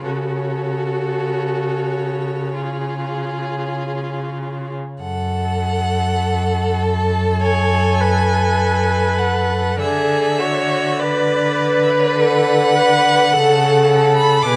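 Solemn and melancholic, this slow romantic movement for string quartet in F# minor moves with a flexible rubato at around 47-54 BPM in 4/4, and all four bowed players sing with vibrato from 0.1 to 14.6 seconds. A clear, focused first violin carries the close melody high above a rich, more distant second violin line, while a smooth, even viola fills in the accompaniment and the cello holds the bass up front. The harmony settles from F# minor toward D after a new section begins at 5.0 seconds, all framed by a moderate recital hall reverb in a passage cut from a longer piece.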